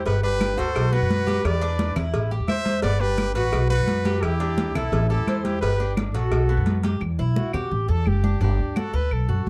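Damped, high-tuned congas, a round low cowbell and woody claves set a straight Cuban son and guajira groove under a growly pizzicato upright bass up front and a picked, metallic tres doubling its strings in arpeggios, while a punchy, close-miked trumpet sings the nostalgic melody with vibrato and scooped notes over a breathy, chiffy flute second line that drops out at 6.8 seconds, leaving the trumpet to solo from 7.0 seconds in this dark, small-room excerpt.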